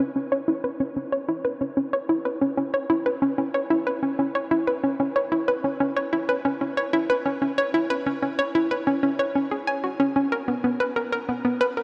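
A hollow, bouncy square-wave pluck with a detuned, wave-folded edge plays alone and up front from 0.0 to 11.8 s, ranging from B3 to G#5 through chorus and analog delay, while a huge, wet reverb with a 7.7-second tail and a dulled top end casts this mysterious, cosmic ambient fragment of a longer piece into a vast, dark space.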